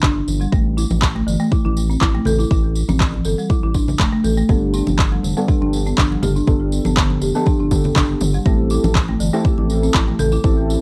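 Afro house at 121 BPM in A minor, driving and hypnotic, with a swung 16th feel and a cassette-recorded, lightly reverberant sound. A woody, rustic folk marimba plays arpeggios with cassette tape character, tape echo and sidechain pumping, alongside a round, nasal analog bass that pumps as well, while an overdriven electronic kick and an up-front deep house kit with handclaps and toms drive the groove, backed by thick-skinned congas and a jingly tambourine. At 4.5 seconds a dark, detuned chord stab with chorus, phaser and a filter pluck enters over Gadd9, moving to Am7 at 8.5 seconds.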